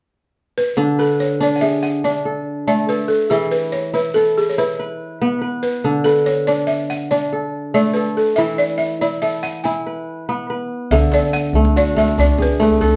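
A woody, buzzing balafon played with rubber mallets carries the melody from 0.6 seconds, joined almost at once by crisp, ringing fingerpicked kora arpeggios in this joyful, flowing excerpt of West African string and xylophone music at 95 BPM in 12/8, set in D lydian over harmony that moves between D and E. The balafon sits up front with a plate reverb, and at 10.9 seconds a deep djembe with metal rattles enters, its hard-handed strokes compressed and saturated. The whole recording is heard from further back in a small, reverberant room.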